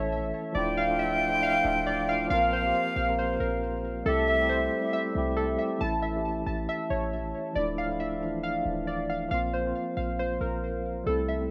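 Hip hop with a half-time feel and an eerie, menacing mood, cut from a longer piece and heard in a rough home demo mix with light reverb. Warbling, nostalgic lo-fi synth keys with chorus and delay play arpeggios up front over a mellow tine electric piano that sounds as if it comes through its built-in speakers, while a clean, boomy 808-style bass anchors the bottom. An airy, distant concert flute with a straight tone and delay adds a second line until 4.9 seconds, as the chords move through Dmadd9, Bbsus2 and C6.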